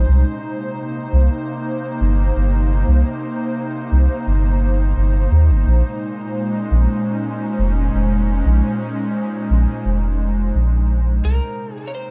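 A straight 4/4 pulse at 86 BPM carries this deep, meditative ambient dub fragment in Bb dorian, cut from a longer piece, where a round, soft sub bass sits up front under an airy, breathy pad with chorus holding sustained Cm7 and Bbm11 chords. At 11.2 s a dark, slightly broken-up electric slide guitar enters for a brief melodic phrase with dub echo, just as the light reverb and the fade-out that began at 9.4 s carry the music to its close.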